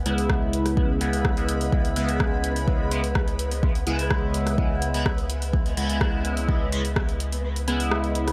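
Hypnotic and hazy, this short dub techno excerpt moves at 126 BPM in C# minor, resting on a single C#m7 chord. A soft, round dub sub bass with tube saturation anchors the low end while a juicy, wave-folded polysynth carries stabs through chorus, phaser and dub echo, all breathing with sidechain pumping. A punchy, tape-warm analog drum machine ticks out hi-hat and rim click beside an overdriven deep electronic kick, which drops out at 7.4 seconds. Behind them a flickering, grainy granular texture glints in the background with its own reverb, over a bed of vinyl crackle and digital ambience.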